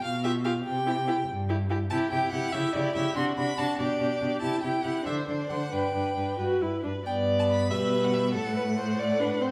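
A smooth, even first violin with rich vibrato sings the melody up front in this cheerful, lively classical-period string quartet movement in 6/8, joined by a focused second violin on a lower line, a dark, close viola with soft attacks and expressive portamento filling in the accompaniment, and a warm, expressive cello anchoring the bass with its own portamento, all set in a wet recital hall that lends the violins and cello a distant glow.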